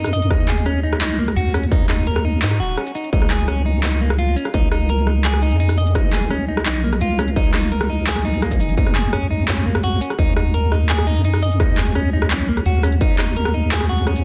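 Half-time drum and bass in Eb minor at 170 BPM, this spacious, cinematic passage sets a bright, twangy clean electric guitar playing dub-echoed arpeggios over a deep, dark wobble bass thickened with chorus and sitting up front, while an industrial drum kit of crisp hi-hats, handclaps, rim clicks and shaker is joined by a distorted electronic kick that enters at 0.3 seconds, all moving through Ebm, Db and back to Ebm in a dry, dense, heavily limited mix.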